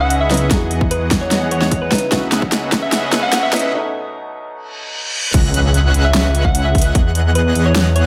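Emotional and lush, this half-time future bass excerpt in C# minor at 149 BPM builds with a round, tine-like ring-modulated synth pluck melody, a soft felt-muted upright piano, a barely audible fingerpicked concert harp, a fat, bold polysynth riff and a thick, tube-saturated detuned saw bass, the pluck, piano, polysynth and bass all pumping to the sidechain. Beneath them sit an overdriven big-room drum kit with a huge snare, a hard-clipped electronic kick and a very quiet electronic riser, reverse cymbal and impact, until the drop at 5.3 seconds brings in an airy, dreamy detuned lead with vibrato in the background.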